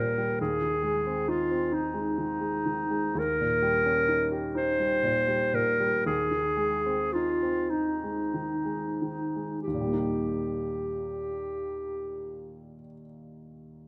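A clear, up-front solo clarinet sings a lyrical, tender melody over warm, smooth and vintage-toned grand piano accompaniment in this romantic classical duo in Eb major, a rubato 6/8 at 28-46 BPM in dotted quarters that slows from 1.7 to 9.6 seconds as the harmony moves from Ab/Eb through Eb7 to settle on Eb, with the clarinet stopping at 12.7 seconds and the piano sounding on to 13.9 seconds, all captured by close, detailed microphones in a moderate recital hall reverb.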